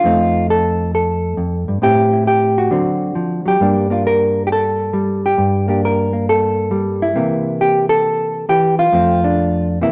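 A hollow-body electric jazz guitar carries this short solo jazz passage, its clean, fingered tone dark and placed up front. The mood is warm and playful, with a swung feel in 4/4 that keeps the line buoyant. The guitar moves through a changing set of chords, starting on F7, passing through Am7, D7#9 and a lengthy stretch on Gm, then resolving from C7 to F near 8.9 seconds. Its range spans F2 to Bb4. A stone room reverb with a 1.3-second tail surrounds the instrument with a wet ambience, and the performance has the immediacy of live playing in a single room. The clip is cut from a longer piece and runs just under 10 seconds.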